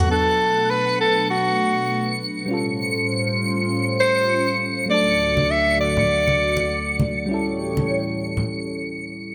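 This sunset chillout piece in B minor moves at a relaxed 100 BPM with a gentle sixteenth-note swing and a wistful, easygoing mood. A smooth-topped soprano saxophone carries the jazz-style melody up front, touched with delay, and falls silent at 7.0 seconds. Beneath it, a round, dark FM electric piano plays chorused, delayed accompaniment over an airy, breathy pad that holds long sustained chords through chorus and phaser, while a filter sweep on an analog synth pad runs through the section. High above, a twinkling granular texture adds sparkling, octave-up shimmer, and soft-handed congas with a bright, saturated edge join at 5.4 seconds. The harmony drifts from Bm7 through A7alt and Dmaj7 to A7, and a brief break arrives at 8.5 seconds, leaving the electric piano to close the passage. A lush plate reverb and glossy 1980s-style digital production frame this short section of a longer track.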